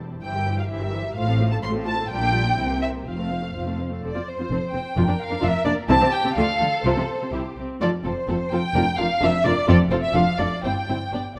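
Close, detailed microphones and light reverb give this recording an intimate, clear studio sound. It is a lively, spirited classical-period movement for string orchestra in F major, moving quickly at 127 BPM in a straight 2/4. Muted violins carry the melody from 0.2 s, while a second muted violin section plays a supporting line, the supporting section sounding lush and the melody placed up front. Muted violas fill in the accompaniment, and muted cellos, set in the background, join a muted chamber double bass section on the bass line, each section con sordino with a veiled, dark colour and vibrato. After an opening phrase, a second section begins at 4.0 s, and the harmony moves through chords such as C7, Dm and B-flat over F before the music is cut off, since it is taken from a longer piece.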